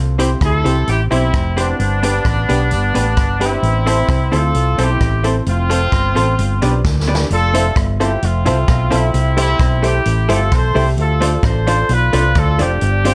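Up front, a clear horn section carries a joyful, cheerful ska melody with light vibrato at 131 BPM in C major, over a dark, round hollow-body electric bass, clean, picked hollow-body jazz guitar with plate reverb, woody upright piano stabs set in the background with dub echo, and a swinging big-band drum kit with punchy kick and rim click, whose fill at 6.8 seconds leads into the Fmaj7-colored second section of this cut from a longer piece.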